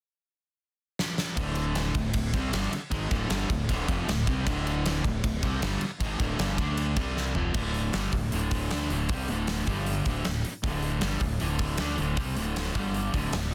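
Hard rock with a menacing, aggressive edge, this straight four-beat excerpt is cut from a longer piece. A gated 80s drum kit opens with a fill at 1.0 seconds, sitting up front with a punchy kick, fat snare, bright cymbals and an airy, polished stone-room gate across crash, ride, hi-hat and toms. At 1.4 seconds two guitars launch the riff over a D minor chord: a bright, compressed, picked electric guitar with distortion, and an overdriven semi-hollow guitar whose hollow-body tone sits in the background. A fingered electric bass, direct and amped with fuzz and overdrive, adds a warm, punchy low end beneath them. After another drum fill, a new section arrives at 7.6 seconds, with the riff moving between power chords on D5 and G5. Moderate studio reverb and a dense, heavily limited modern master give the whole band a loud sound.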